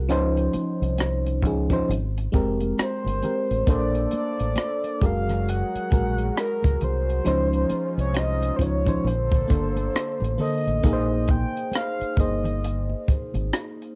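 R&B and neo-soul at a slow 67 BPM with a swung sixteenth feel, this soulful, sensual passage cut from a longer piece sets a mellow FM electric piano with cassette grit and plate reverb over a round, punchy dub bass, a dark, compact cocktail kit of hi-hat, kick and rim click, and very quiet damped congas, while a warbling, horn-like synth lead with chorus and vibrato enters at 2.8 seconds and a detuned analog pad hovers in the background from 3.7 to 10.8 seconds over lush chords moving from Dbmaj9 through Abmaj9, Bbmaj9 and Gbadd9 to a closing Bb9sus4, all captured as a lightly reverberant home cassette recording.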